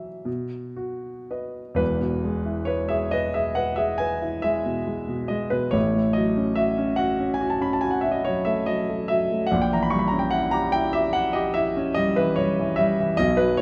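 Classical romantic nocturne for solo piano, this short passage cut from a longer piece has a serene, nostalgic mood. A grand piano carries everything alone, its tone smooth and vintage, placed up front in the sound and spanning a range from deep bass notes to bright upper tones. The lilting compound metre moves with a flexible, rubato feel, unhurried and expressive. After a brief opening phrase, a new section begins at 1.8 seconds and carries on through 13.6 seconds. Along the way the harmony drifts into a minor colour and then a tense diminished chord at 9.5 seconds, lending a touch of longing. A moderate recital hall reverb surrounds the instrument with a gentle sense of space.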